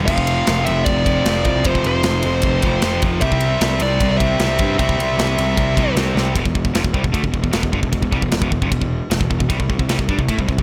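Dry, this dark, epic heavy metal excerpt at 153 BPM pairs a fuzzy, overdriven bass and a tight, up-front drum kit with bright cymbals against two bright, picked rhythm guitars set in the background, while a dark, high-gain lead guitar with delay carries the melody until 5.9 s, and a drum fill at 6.2 s leads into the second section, which settles in E minor from 6.4 s as the tight distorted guitar drops out.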